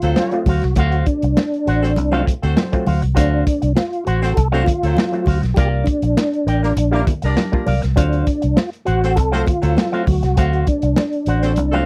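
A vintage fingered electric bass sits up front in this energetic, strutting funk passage, its foam-muted tone dark, round and amped as it holds the low end from the start. Beside it, a crunchy breakbeat kit of hi-hat, kick and medium-tuned snare sounds saturated and gritty, with a tight kick and a rolled-off top. A mellow tonewheel organ carries the melody through slow rotary speaker and chorus vibrato, while a dark horn section plays a punchy second line with octave doubling and light vibrato, set distant in a roomy space. An electric guitar with an envelope filter supplies a clean, picked, twangy and scooped accompaniment. From 0.2 seconds, an overdriven auto-wah clav adds stringy stabs through a combo amp, and congas with hard hands ring in the background. The harmony moves from D7#9 to C9sus4 at 5.6 seconds and back at 8.0 seconds, all captured in a dry, close 1970s-style studio recording cut from a longer piece.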